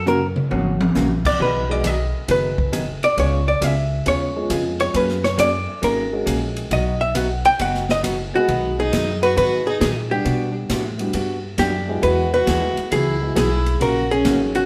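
Swinging and cheerful, this short cut from a longer western swing tune moves at 135 BPM in 4/4 with a strong swing feel, set in B major. Up front, a clean, compressed archtop guitar carries the melody with a warm, picked hollow-body tone, while a dark hollow-body jazz guitar plays accompaniment underneath and takes a solo through the first 8.5 seconds. A woody, thumpy upright bass with gut strings holds the low end, and a mellow, vintage upright piano sits in the background adding smooth accompaniment. The big-band drum kit opens with a fill in its first second, its punchy kick and airy cymbals giving the groove polish. At 8.4 seconds a clear, earthy fiddle enters with a close, lightly vibrato second line as the harmony shifts toward Gmaj7 and Eadd9 before settling on F#. The band sounds as if playing live together in a stone room with a moderate reverb.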